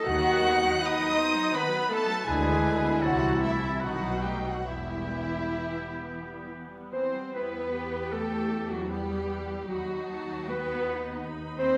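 Muted violins carry the melody high above the orchestra, their con sordino tone veiled and touched with vibrato, while a second violin line sits lower and more distant beneath it. This is a slow, yearning romantic movement for symphony orchestra in triple time, moving with a rubato feel through melancholic harmony, and it is cut from a longer piece. Muted violas supply accompaniment with a light vibrato, and muted cellos and double basses, the cellos set further back, hold the bass from the opening. In the first half, an airy flute group in the background, a vintage-toned oboe with gentle vibrato and a warm French horn section holding sustained chords fill out the texture, with the horns dropping out at 6.4 seconds. A dark, roomy solo clarinet takes up a second line from 6.9 seconds to the end. The orchestra is bathed in a wet scoring-stage reverb.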